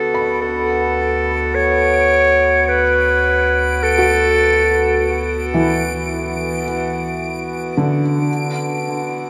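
In a straight 4/4 pulse at 54 BPM, this serene, spacious ambient piece sets a clear, up-front solo clarinet melody in classical style, ending at 5.5 s, over felt-muted upright piano arpeggios with audible action noise, a reedy, breathing hand-pumped harmonium drone, a deep, ominous, warbling bass drone, and a reversed, granular swelling texture glinting high above, all in a vast, echoing cathedral reverb, as Dadd9 gives way to Bm at 8.3 s and a fade-out begins at 5.3 s.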